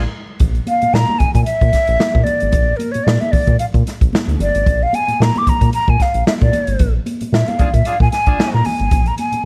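Energetic and gritty, this short funk excerpt moves at 113 BPM in 4/4 with a 16th-note swing, sitting in Bb mixolydian over a Bb7 chord. A round, deep analog bass holds the low end throughout with a dark, nasal, sustained tone, while a polished big-band drum kit with tight kick and medium-tuned snare sits up front from 0.4 seconds, joined by bright, high-tuned congas played with soft hands. A breathy, hollow jazz flute carries the melody as a solo from 0.7 seconds, its vibrato and lifted highs giving it a warm lead voice. A vintage horn section adds a second line at the very start and returns from 7.6 to 8.6 seconds, marking the band accents with tight, lightly vibrato-tinged playing. The sound carries light reverb and studio ambience, roughened by vinyl crackle and lossy compression artefacts.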